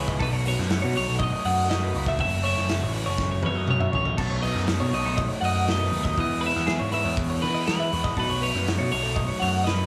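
Dry, in a small room, this wistful, playful math rock and midwest emo excerpt at 121 BPM sets a slightly broken-up lead guitar melody with slapback echo, a bright, twangy twelve-string electric picking clean arpeggios, a double-tracked crunchy overdriven guitar riff and an up-front, growling overdriven bass over a loose acoustic drum kit with dark cymbals and a tight kick, which plays a fill from 3.2 to 4.2 seconds as the chords move through B9, F#m7, B9, Emaj7 and B9.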